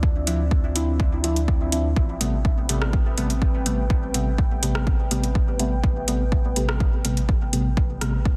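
Dub techno with a nocturnal, deep mood, cut from a longer piece, moving from Dm9 to Am9 over a straight 4/4 pulse. An overdriven electronic kick sits up front beside a soft, round dub sub bass and a dark, slow-attack ambient pad drenched in chorus and reverb, both with sidechain pumping. From 0.3 seconds, a nasal, full-bodied chord stab with phaser and dub echo joins a deep house kit of metallic hi-hats and rim clicks, the drums carrying the roomy grit of a large space under a dense, heavily limited digital master.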